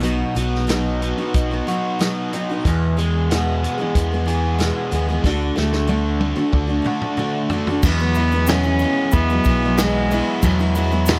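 A picked steel-string acoustic guitar with full-bodied dreadnought tone and a biting, double-tracked overdriven electric guitar riff open this nostalgic, open-road folk rock and heartland rock excerpt at 93 BPM, over a round, punchy fingered bass and a vintage drum kit with a tight kick and rolled-off top. The chords move from B to E to D, and a drum fill from 5.3 seconds leads into an E major passage at 7.8 seconds on Eadd9. There, a rich, floating cello played sul tasto carries the melody while a grainy egg shaker sits in the background, all captured in a dry, close 1970s-style studio sound.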